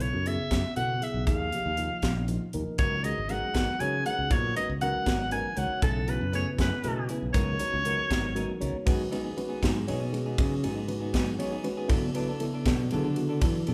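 A band playing live together in a large studio, with a moderate reverb, carries this intense, nocturnal stretch of electric jazz fusion in 6/8, cut from a longer piece. A bright, forceful soprano saxophone with vibrato leads the melody up front yet with a roomy, distant edge until 8.6 s, over a reedy electric piano with fast tremolo, a crisp, airy drum kit with a high-tuned snare and punchy kick, and a direct fingered electric bass. Clean, picked stabs from a warm semi-hollow guitar enter at 2.8 s, and from 8.9 s the bass steps forward for a solo over suspended chords.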